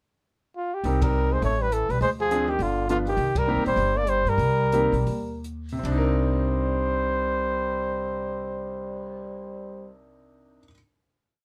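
Small-group jazz in a swing and bop vein, this short, complete piece carries a cool, smoky mood. During a brief pickup, a flugelhorn enters and sings the motif-based melody up front with light vibrato and scooped notes, while a bright, vintage-toned trombone adds a harmony line mostly in thirds beneath it. A clear, intimate grand piano comps in syncopated drop-2 voicings with its action noise audible, and a woody upright bass with gut strings plays a thumpy pizzicato two-feel. A compact cocktail kit, dark and smooth with a tight kick and a rolled-off top, keeps time on the hi-hat with sticks and adds ride, crash and a cymbal swell. The band hits accents at 1.0 and 3.3 seconds, the tempo slows through the middle, and the group settles onto a final chord from 5.8 seconds under light reverb.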